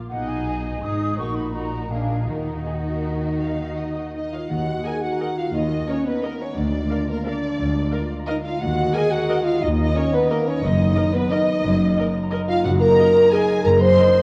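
A tight, up-front French horn section dominates this dark, bittersweet orchestral ballroom waltz, entering at 4.1 seconds with smooth-topped sustained chords carrying light vibrato. Beneath it, in 3/4 at a rubato 153-192 BPM in E-flat minor, a ringing, fingerpicked concert harp spins arpeggios from the very start. A lush, expressive violin section carries the melody with a soft attack, while a second, more focused violin section and an even, smooth viola section fill out the harmony. An airy, bright small flute group adds a lifted second line only until 4.3 seconds. The low end comes from a bowed double bass section and a close cello section tucked in the background. The whole ensemble sits in a wet scoring-stage reverb and is coloured by worn, warbling old cassette tape with a wavering pitch drift, lending this cut from a longer piece a faded, bittersweet cast.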